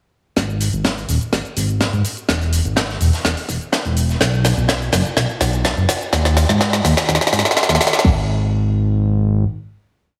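A straight 4/4 pulse at 125 BPM drives this short, emotional progressive house piece in G# minor. An electronic kick drum, deep and high-passed, holds a four-on-the-floor beat in the background, while an up-front deep house kit adds programmed closed and open hats, shaker, crash and a woody backbeat snare, its dark hats, percussion and cymbals pumping with sidechain. Underneath sits a gritty, saturated garage kit with a rolled-off top, playing a looped breakbeat with edits, its hats, snare and room high-passed. A fat, detuned sawtooth bass carries a sustained dotted-rhythm line with a filter sweep and sidechain pumping, prominent in the mix. The whole passage from 0.4 s works as a build with a drum fill, the drums fall away between 8.0 and 8.1 s, and the bass rings on as the final note until 9.4 s. A lush hall reverb and small-room ambience give the mix a dreamy, reverb-soaked sheen.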